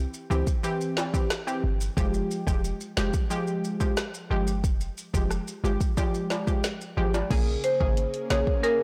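A blown-out, overdriven mix with light digital reverb carries this sultry, hypnotic dancehall fragment at 90 BPM in F harmonic minor: an up-front electronic afro-pop drum kit with a deep kick, woody snare and metallic hats plays alongside a tight, sine-based short 808-style bass, bright compressed maracas and timbales, and a round, warbling analog pluck with chorus and sidechain pumping over chords of C and Fmadd9. Once the harmony turns to Bbm7, a marimba with medium hard mallets and delay arrives at 7.6 seconds and an ethereal, detuned airy pad at 7.7 seconds.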